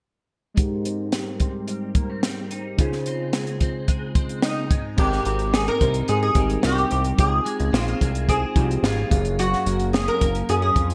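Nostalgic and laid-back, this short cut from a longer indie and bedroom pop piece moves in a straight, easy four. Warbling lo-fi synth keys with a mellow, chorused and phased tone open at 0.5 s, joined almost at once by a bright, twangy twelve-string electric guitar with a warbly pitch drift and a compact cocktail drum kit whose punchy kick, high-tuned snare and dark cymbals sit up front under gated reverb. A filter sweep runs through the opening chords of Abmaj7 and Dbmaj7 before a brief break in the harmony. At 4.4 s a lap resonator guitar takes the melody with a metallic, nasal slide sound played with fingerpicks, and at 5.0 s a fat, detuned sawtooth bass enters up front as the progression returns and moves on to Gbmaj7. A moderate plate reverb and a bright 1980s-style digital production shape the whole piece.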